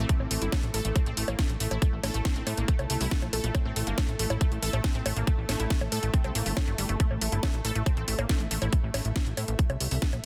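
A straight 4/4 pulse at 139 BPM drives this hypnotic, intense psychedelic trance passage, with a tight, tape-warm electronic kick up front and an overdriven techno kit of bongos, hi-hat and cracking snare layered around it. A punchy, funky analog bass with a fast-attack filter pluck sits forward in the mix, while a detuned, warbling unison pluck plays a riff through delay until 8.7 s, and a pulsing, tempo-synced gated texture holds sustained chords on A5, both carrying sidechain pumping. In the background, an ethereal, airy pad with ensemble chorus, reverb and sidechain pumping fills out a dense, heavily limited modern master cut from a longer piece.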